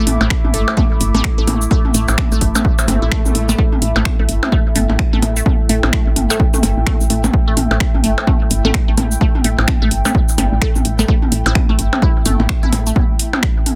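Minimal techno at 128 BPM with a 16th-note swing, cool and sparse, cut from a longer piece: a punchy, up-front kick and a booming analog drum machine with finger snaps, metallic hi-hats, shaker and a soft-clipped snare drive the groove; overdriven electronic toms and percussion blips carry dub echo; a woody, round FM bass sits low; a squelchy, resonant blip pluck riff runs through phaser, cassette tape and dub echo; a warbling, nostalgic lo-fi pad with chorus and phaser breathes under sidechain pumping; and a brief electronic swell appears in the background at 2.8 seconds, all under a dense, heavily limited master with light reverb.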